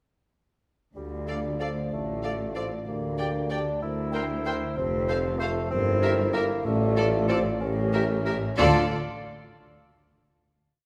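Swaying in 6/8 at 63 BPM, this short cinematic cue in D minor feels playful and whimsical, with a magical, sneaky air. From 1.0 s a distant bassoon carries a line over a tight French horn section holding chords, while a mellow tuba and a smooth double bass section double the bass and a lush cello section sounds bass on the beats. At 1.3 s a focused violin section takes the melody as a bright oboe, a second violin section, a dark clarinet, an airy, hollow small flute group and a very quiet viola section add after-beat chords, all within a moderate scoring-stage reverb, before the harmony settles on a final D minor chord at 8.6 s.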